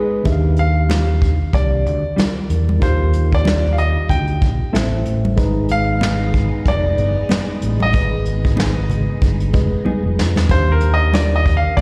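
Lush and smooth, this short cut from a longer 1970s-style soul piece sits at an easy 94 BPM in Eb major with a gentle sixteenth-note swing, opening on a band accent at 0.0 seconds. A clear, polished baby grand piano carries the melody with a slapback echo, while a worn, slightly out-of-tune tine electric piano supplies accompaniment through its built-in speakers, also touched with slapback. Underneath, an overdriven, round fingered electric bass and a dark brush drum kit with a punchy kick sit up front, joined by soft-handed congas and a mellow electric guitar riff with tremolo tucked in the background. A swirling sawtooth string machine with ensemble chorus and phaser swells into sustained chords from 5.5 to 10.5 seconds, and a very quiet, metallic vibraphone with soft mallets rings at the opening and returns near the close. The harmony moves from Ebmaj9 through Am and Abm before a drum fill hands off to a brief grand piano solo at 10.5 seconds, all heard as a live gig through the venue's PA with recital-hall reverb.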